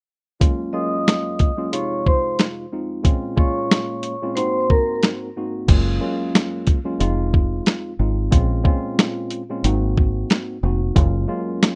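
A dry, rough home-demo mix carries this short boom-bap hip-hop cut from a longer piece, moving at 91 BPM in 4/4 with a lightly swung sixteenth feel and a tough, dark mood. The sampler-style drum kit sits up front with 12-bit grit, a thumpy kick, a medium-tuned snare, hi-hat and crash, all compressed and tape-warm. Underneath, a worn, slightly out-of-tune electric piano plays the accompaniment through its built-in speakers, lightly overdriven and filtered with a cassette haze, tracing chords such as Gbmaj9, Bbm7 and Ab7 in a tuning set to A4 = 437 Hz. A dark, smooth vibraphone with medium mallets carries the melody from 0.7 to 5.0 seconds, its metallic ring shaped by slow motor vibrato, filtering and delay. At 5.7 seconds a deep, round, foam-muted fingered electric bass enters on the low end, punchy and up front, as the progression shifts to include Fm7.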